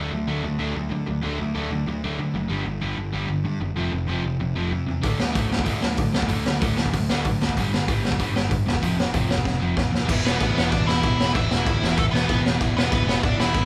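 A gritty garage drum kit with a boomy kick enters up front at 5.0 s to drive this rowdy, energetic 190 BPM punk rock excerpt, where two overdriven electric guitars play picked riffs in the background over a fuzzed, overdriven picked bass; a drum fill at 9.5 s leads into a turn to E minor, and a nasal lead guitar with a parked wah takes the melody from 10.3 s, as the band plays live in one room with light reverb.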